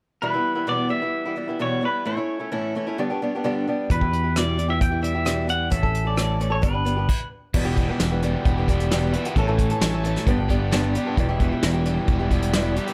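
Dusty and wistful, this folk rock and heartland rock passage moves at 132 BPM in E dorian, opening with a boxy, ladder-braced acoustic guitar picking beneath a clean pedal steel melody played with fingerpicks, slide and volume swells. At 3.9 seconds a punchy fingered electric bass and a soft brush drum kit with a tight kick enter up front; after a brief stop near 7.1 seconds the pedal steel falls away as a crunchy, double-tracked overdriven guitar riff arrives alongside a shouting tonewheel organ on slow rotary speaker, set in the background. Light reverb and studio ambience frame the cycling Em, A and G changes.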